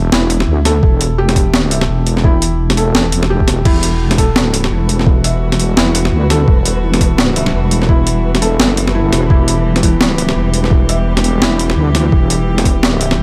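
A light digital ambience frames gritty, overdriven, sampler-style drums in this heavy, tense half-time drum and bass passage at 170 BPM in E minor, swung on the sixteenths and resting on an Emadd9 chord. A felt-muted upright piano plays mellow arpeggios through dub echo, its action noise audible, above an up-front, deep wobble bass with chorus, while a boom bap kit with a high-tuned snare and an electronic kick that thumps from 0.8 seconds drive the groove. A bowed cello section floats sul tasto in the background from 3.7 seconds with sidechain pumping, and a flickering granular texture on B4 drifts in at 4.6 seconds.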